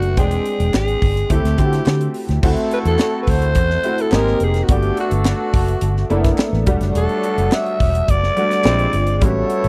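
Polished 1980s jazz-funk pop at 106 BPM with a breezy, glossy mood, this brief cut features a breathy, raspy alto saxophone carrying the melody up front over boxy grand piano with analog chorus, a dark, foam-muted fingered electric bass, and a crisp fusion drum kit with a high-tuned snare and punchy kick, while background handclaps join at 0.7 seconds and a tight, octave-doubled horn section adds a second line from 2.4 seconds as the chords move from E7alt through Abmaj9 and Em11 to Bb9 in a dry, close studio sound with light reverb.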